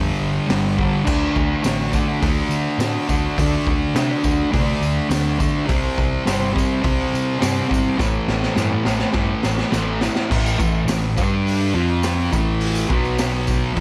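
A thick, double-tracked fuzz guitar riff and a round, hollow-body electric bass open this menacing, swaggering garage rock cut in A minor at 104 BPM, joined at 0.5 seconds by a raw, gritty drum kit with a boomy kick, high-tuned snare and dark cymbals in a pumping small room, then by a jingly tambourine tucked in the background from 1.1 seconds, with a drum fill from 8.0 seconds leading into a new section at 10.3 seconds under light reverb.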